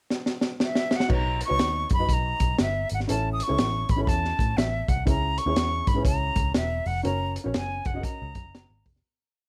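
Joyful and danceable, this uptempo 1960s-style soul piece in B major moves at 121 BPM with a swung feel, opening on a drum fill from the crunchy breakbeat kit before the flute enters at 0.6 seconds and the verse settles over Badd9, A, C#m and F# chords. The gritty, saturated drums with a punchy kick and high-tuned snare drive a backbeat soul groove, while a round, foam-muted picked electric bass plays a syncopated line with chromatic approach notes and a woody upright piano adds short, close-voiced pushed chords with grace notes and audible action noise. Up front, an airy silver concert flute sings motif-based phrases with vibrato and a soft attack, all under light reverb, before the piece fades out from 7.0 seconds.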